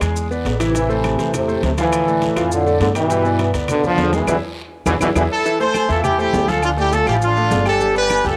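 A clear, vibrato-laden trombone section carries the melody up front from 0.6 s until a brilliant, punchy horn section takes over at 5.3 s in this passionate, fiery salsa excerpt in A minor at 204 BPM, with a band accent from 4.3 s and a drum fill at 4.7 s leading into the change. Underneath, an intimate concert grand piano with audible action noise, deep bass and long sustain plays accompaniment alongside a woody pizzicato upright bass. Background percussion of ringing congas, metal-shell timbales and agogo bells, close dry claves, a raspy guiro and grainy maracas fills out the groove, while cassette-tape colour on the piano and brass marks this small-room home recording.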